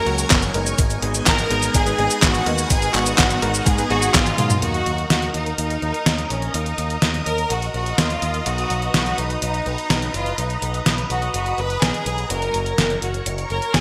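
Italo disco at 125 BPM in Eb minor, this nostalgic, melodramatic fragment of a longer piece moves in a straight 4/4 under a bright 1980s-style digital sheen and a moderate plate reverb. A clear, biting symphonic violin section carries the melody with vibrato and intense, lush bowing, its close sound trailed by a digital delay. Beneath it, a phased string machine holds swirling sawtooth chords with a slow attack and ensemble chorus, while an electric grand piano with a clangy low end and short sustain adds delayed stabs from the background. A picked electric bass, amped and run through an envelope filter, anchors the harmony from Gb through Abm, Ebm and B. Up front, a detuned 8-bit drum machine with gated reverb supplies cabasa, handclaps, hi-hat, a medium-tuned snare and toms. A thumpy, tape-warm electronic kick joins it only until 4.2 seconds, overlapping the start of a drum fill at 4.1 seconds that leads into the second section at 4.6 seconds.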